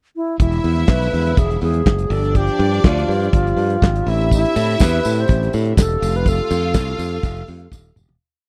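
A four-on-the-floor disco beat with open hi-hats on the off-beats drives this short, danceable pre-chorus, played on a damped, dark 1970s kit with a tight kick and snare layered with handclaps, while a bright, growly fingered electric bass bounces in octaves with chromatic approach notes, both sitting up front in a dry, close studio sound. A pure, vibrato-tinged alto flute carries a motif-based melody of call phrases over a lush, distant string section playing fast runs into held notes and a very quiet, mellow French horn section holding sustained chords, with a jingly tambourine joining on the backbeat at 4.3 seconds. The chords move from E7b9 through G5 and Am7 to F69 before the piece fades out from 6.3 seconds and ends on a drum fill.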